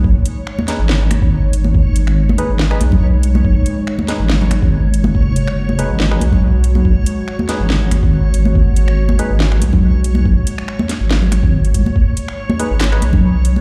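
A swung, half-time groove anchors this brooding, meditative deep dubstep fragment, built on a gritty, thumpy, pitched-down kick and a layered garage kit of cracking snare, metallic hi-hats, finger snaps and handclaps, with bright, high-tuned congas sitting in the background under dub echo. Up front, a soft wobble bass carries the low end with chorus, while a dark sawtooth analog pad holds sustained chords through chorus and phaser, and a reversed, swelling granular texture hangs dreamily above. A hollow, mellow organ stab with subtle chorus and dub echo punctuates the groove from 0.7 seconds, drops out at 9.3 seconds and briefly returns at 12.6 seconds, while the mix, played on a big sound system in a bare room, carries only a faint touch of stone room reverb.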